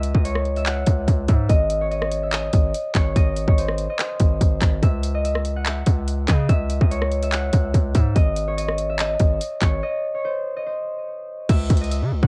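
Trap-inflected hip hop with a hard-hitting, dark mood, this excerpt rides a heavy half-time feel over a minor-key progression that moves between two chords. A concert harp carries the melody in a mid register, its fingerpicked, ringing tone softened by a low-pass filter and given a dusty cassette tape character and tape echo. Underneath, a distorted 808-style bass sits up front, its sine core layered with noise and saturated into an aggressive, heavy growl with a fast attack and a decaying tail. The trap drum kit is electronic and sits up front, built from a hard-clipped kick, metallic hi-hats, handclaps, rim clicks and crash cymbal, also colored by cassette tape. A break arrives around 9.8 seconds before the passage resolves back to the home chord at 11.5 seconds, all wrapped in a digital ambience with the grainy feel of a home recording on cassette.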